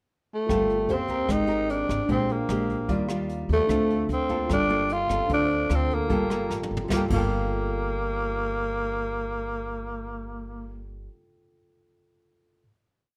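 A straight 4/4 bossa nova groove at 150 BPM in G minor frames this intimate, wistful little piece, where a growling, breathy tenor saxophone sings a motif-based melody up front over fingerpicked nylon-string guitar, a clean tine electric piano holding chords in the background, woody pizzicato upright bass and a dark, smooth brush drum kit, with a short electric piano fill at 6.3 seconds, joined by a drum fill at 6.5 seconds, leading to a final chord that the electric piano sustains until 12.6 seconds in a moderate studio reverb.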